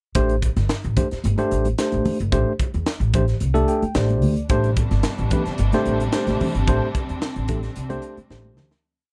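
A crisp, up-front fusion drum kit with a high-tuned snare and tight kick lays down a funk groove in a small, pumping room, joined at once by a woody, dark pizzicato upright bass riff and a clean tine electric piano playing quartal funk chords through its built-in speakers, with soft-handed congas in the background from 1.0 seconds, a piano fill at 3.4 seconds, and a rich, smooth bowed string section adding sustained vibrato chords from 4.5 seconds before the driving piece fades out and ends on a drum fill.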